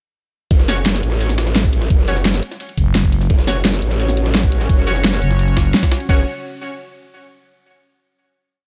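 Dark technical drum and bass at 172 BPM in F# minor, futuristic and aggressive, where a drop from 0.5 seconds hits with an overdriven, knocking electronic kick and an up-front dubstep kit of huge snare, hi-hat, shaker and crash, over a gritty, pitched-up jungle breakbeat loop tucked in the background, while a saturated, wobbling growl bass carries modulated phrases, sparse orchestra-hit-like synth stabs echo through tape-tinged delay and reverb, a thick FM growl bass adds chopped phrases from 2.8 seconds, and a sweeping, resonant pad pumps in from 3.3 seconds before a final chord closes the piece.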